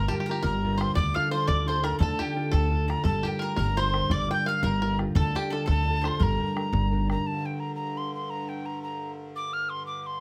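Celtic folk jig in G minor at 114 BPM in 6/8, dark, lively and driving, cut from a longer piece. An airy, chiffy wooden whistle carries the melody with vibrato and plate reverb over a ringing concert harp, a twangy fingerpicked banjo and a round mandolin in the background on second lines, a thumpy gut-string upright bass and a boomy, dry bodhran. By 7.2 seconds the banjo, mandolin, bass and bodhran have stopped, and at 7.3 seconds a sweet, reedy accordion drone with light tremolo tuning enters beneath the whistle and harp.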